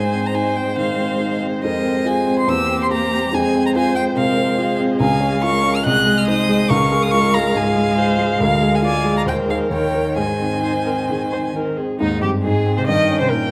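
Close, detailed microphones in a moderate recital hall capture this quick, cheerful excerpt from a classical-period movement for piano quintet, in Ab major at 141 BPM with a rubato feel. A clear, bowed violin sits up front with a smooth, vibrato-rich melody spanning Eb4 to Gb6, while a rich second violin and a smooth-topped cello trace even second lines and a warm viola fills out the accompaniment. The polished, present baby grand piano also sits up front, supporting chords that move from Ab through Fm7, Db and Bb7/D to a closing Eb7/G.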